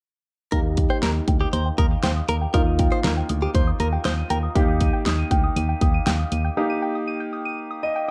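A punchy, up-front electronic pop drum kit with a fat snare drives this bright, nostalgic synth-pop excerpt alongside a round, fast-attack FM bass and a clear, intimate concert grand piano whose action noise is audible under its low-pass filter. A soft, detuned pluck with chorus and tape echo plays high arpeggios, while a clean, direct-recorded electric guitar adds a compressed, picked second line through phaser and echo until 4.4 seconds. A filter sweep runs throughout the dark production, and after the drums drop out at 6.4 seconds a break follows, closed by a short grand piano fill at 7.6 seconds.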